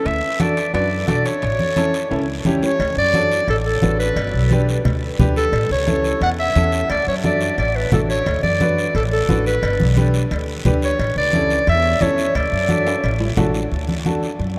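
A bright, up-front clarinet opens this sunny, festive cumbia at 0.0 seconds, carrying the melody in a classical style over a brisk 176 BPM in 4/4 and D major. Within the first half second the band falls in: a woody, thumpy upright bass played pizzicato on gut strings, a raspy guiro heard close and dry, congas with a thick, medium-tuned skin, and very quiet ringing timbales and cowbell with a metal shell. A clear, intimate upright piano supplies the accompaniment, its audible action noise adding a natural touch. The harmony moves plainly among D, G, A and A7, and drum fills mark the turn into the second section at 2.8 seconds and again near its close. The whole band sits in a vast, echoing space thanks to a huge, wet ambient reverb, which gives the dance groove a spacious glow. Cut from a longer piece, the clarinet drops out at 13.4 seconds while the bass, guiro and piano carry on briefly to the end.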